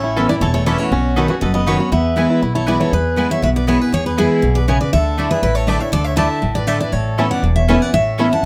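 A picked jumbo steel-string acoustic guitar sits up front carrying the melody, its full-bodied, warm tone lifted by a touch of plate reverb in this lively, virtuosic bluegrass fragment in E mixolydian at a brisk 240 BPM in straight 4/4. A second, brighter dreadnought guitar supplies the picked accompaniment, while a more distant, clear fiddle adds a bowed second line with light vibrato and a biting, nasal, earthy edge. A thumpy, woody upright bass plays pizzicato beneath, and a mandolin with double strings punctuates the groove with stabs. A twangy, percussive banjo played with fingerpicks plays arpeggios, dropping out at 2.9 s and returning at 7.2 s. The harmony moves from Aadd9 and Badd9 to E, then Dsus2 before circling back to Aadd9. Close, detailed microphones and a moderate studio room capture the ensemble.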